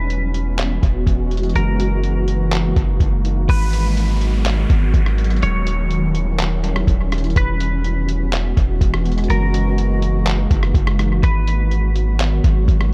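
This dry, echo-heavy mix gives the piece a melancholic, hazy cast, with atmospheric cloud-rap moving in a half-time feel through chords such as E69, F#13, G#m7 and D#7b9. A deep, sine-toned 808-style bass and a muffled, compressed sampler-style drum kit of thumpy kick, handclaps, hi-hat and rim click sit up front, beneath an ethereal, detuned pad with ensemble chorus, built-in reverb and sidechain pumping. A clean semi-hollow electric guitar carries the melody through analog chorus and dub echo until 12.2 seconds, while an electronic downlifter sounds from 3.5 to 7.4 seconds.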